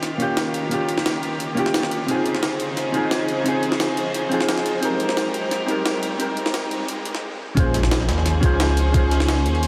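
A dark, clean hollow-body electric guitar opens this dreamy, uplifting liquid drum and bass at 175 BPM in Ab major. Its fingered accompaniment sits up front, coloured by lush chorus, a low-pass filter and analog delay, above a distant, earthy chamber string ensemble bowing rich sustained chords with light vibrato. A compressed, pitched-up, gritty breakbeat kit of hi-hat and high-tuned snare drives the build-up from the start, while an electronic riser creeps in from 0.4 seconds in the background as the harmony moves through Eb7, Dbmaj9 and Abmaj7. After a brief stop, the drop lands at 7.6 seconds on Bbm9 with an electronic impact, a thumpy sampler-style kick and a menacing, saturated detuned sawtooth bass whose filter swell gives it an evolving, up-front growl. A second, tape-warm breakbeat kit joins further back, its medium-tuned snare and hats thinned by high-pass filtering. The whole mix is soaked in a huge ambient reverb with a 5.2-second tail, giving this cut from a longer piece a hazy, floating sheen.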